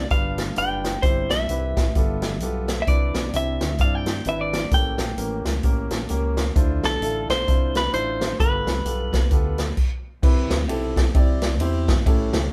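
Uptempo gospel at 130 BPM in C major, hopeful and uplifting, swinging its eighths as a band plays live in one room with light reverb. A clean, picked electric guitar with a dark, compressed, up-front tone carries the melody until 9.7 seconds, over a round, punchy fingered bass, an intimate, boxy grand piano with audible action noise and long sustain, and a swinging drum kit of crash, ride, hi-hat, boomy kick and snare. Chords move from G7 through Cmaj9, A7b9 and Dm9, and after a brief stop at 9.8 seconds the band lands on Cmaj7 at 10.2 seconds in this cut from a longer piece.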